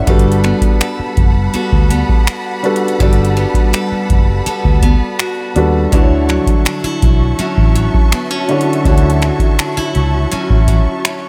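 A small room's reverb gives this short cut from a longer contemporary R&B piece an intimate, close feel, with a booming analog drum machine sitting up front. At 82 BPM in 4/4 and D major, the mood is romantic and smooth, moving from Gmaj9 to Dmaj9 at 5.9 seconds. The drum machine supplies a deep kick, metallic hi-hats and finger snaps, while a vintage fingered electric bass adds a dark, round, foam-muted punch. A felt-muted upright piano plays mellow accompaniment with a thin, soft tone and audible action noise, and a bright picked steel-string acoustic guitar weaves arpeggios through tape echo, finger squeaks catching the ear. Beneath them, a lush symphonic string section holds sustained chords with expressive vibrato and a soft bowed attack. The bass drops out at 10.8 seconds and the drums at 11.2, while piano, guitar and strings carry on through to 11.3 seconds.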